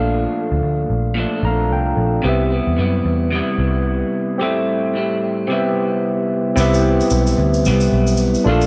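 A lightly swung 16th-note groove at 111 BPM in 4/4 carries this nostalgic, dreamy bedroom-pop excerpt, with a round, foam-muted picked electric bass up front and a slightly broken-up, compressed electric guitar from a small old amp adding subtle chorus and vibrato over Bbmaj7, Cmaj7 and Am7 chords. A bright, barky tine electric piano with overdrive and cassette-tape colour plays a fill at 1.2 s. A grainy, distant tube shaker enters at 6.6 s, all within a light reverb.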